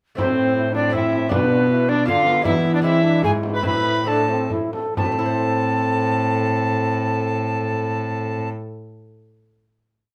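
A solemn, courtly Renaissance-style consort dance in 3/4 and A harmonic minor opens with the whole ensemble together, led by an airy alto recorder whose tongued notes carry a gentle chiff and vibrato up front. A viola with a reedy gut-string tone doubles the tune at the octave, while a soft-attacked trombone, close-miked, adds independent inner lines and sustained chords. Underneath, a nasal, bowed cello holds a sustained bass with passing notes, and a delicate fingerpicked lute with double gut strings rolls its chords in the background. A deep, distant frame drum plays a dance rhythm until about 5.2 seconds. The tempo eases from around 1.9 seconds as the harmony moves through Am, Bdim and E7 back to Am, settling into a final chord that the lute lets ring to 8.8 seconds, all within a light reverb.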